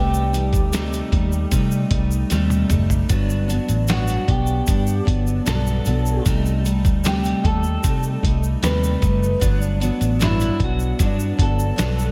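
Hazy and nostalgic, this 76 BPM indie and bedroom pop excerpt in G major drifts between Cm6 and Gmaj7 in a dreamy, reverb-soaked hall, where a slightly broken-up, twangy electric guitar through a small old amp carries the melody with lush chorus and delay over an up-front, full-bodied picked steel-string acoustic guitar with finger squeak, analog chorus and vibrato, a dark, round, foam-muted vintage electric bass, a grainy, bright egg shaker entering at 0.1 seconds, and a muffled, pitched-down lo-fi sampler-style drum kit with a thumpy kick and tape-warm tone that comes in at 0.3 seconds and plays a fill from 2.3 to 3.1 seconds.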